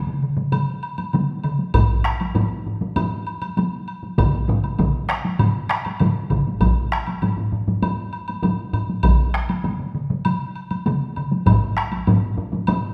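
Four taiko ensemble layers drive this ceremonial, straight 4/4 Japanese traditional drumming fragment at 99 BPM, with two louder hard-stick layers joining at 1.7 s over two earlier heavy-stick layers, while a woody woodblock sits lower in the mix from 0.5 s and a recital-hall reverb of 1.4 s surrounds the performance.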